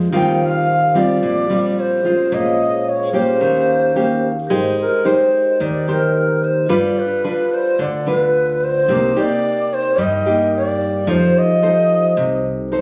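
A straight 4/4 bossa nova groove at 110 BPM sets a breezy, romantic mood in this short cut from a longer piece. Up front, a classical nylon-string guitar is thumb-plucked, with the odd finger squeak, while a woody, thumpy pizzicato upright bass on steel strings sits low beneath it. A bass bansuri carries the melody from 0.2 seconds, its bamboo tone breathy and reedy with a crisp attack, lifted highs and vibrato. Behind them, a dark, smooth vibraphone struck with medium hard mallets rings with a medium motor vibrato. The harmony moves from Eb69 through Bbm7, Eb7 and Abmaj7, then on to G7, Cm7 and F7. The sound was caught on a phone in the room, with a club ambience and compression.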